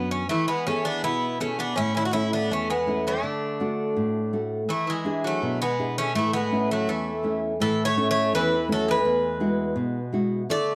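A dry, close 1970s-style studio sound with small-room ambience frames this relaxed, sunny excerpt of Greek bouzouki band folk in 2/4, where a bright, metallic picked bouzouki with double strings, some octave-doubled, carries the melody up front, a softer second bouzouki adds a supporting line from 0.3 s, and a warm, fingerpicked classical nylon-string guitar, also up front, accompanies through chords moving from E to A, D and E7, back to A, before settling on Eadd9 at 9.0 s.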